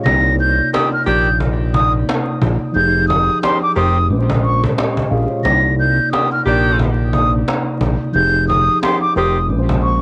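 This short cut from a longer boom-bap hip-hop piece has a lo-fi home-cassette sound, with vinyl crackle and light reverb framing a reflective yet tough mood at 89 BPM in C minor, swung on the sixteenths. A mellow tine electric piano, clean and heard as if through built-in speakers, carries the chords from the very start, moving through Cm9, Fm9 and Bbm9 and dulled by filtering and tape coloring. A breathy concert flute, close-miked and up front with a straight tone and soft attack, sings the melody high in its register, trailed by tape echo. Underneath, a fat sawtooth analog bass with a filter sweep and fast attack sits thick and sustained, while a woody cajon struck with hard hands sounds distant, as if in a large room, with faint snares. From 0.7 seconds an edgy saxophone section adds tight, punchy pop-style stabs with vibrato, also filtered and echoed on tape.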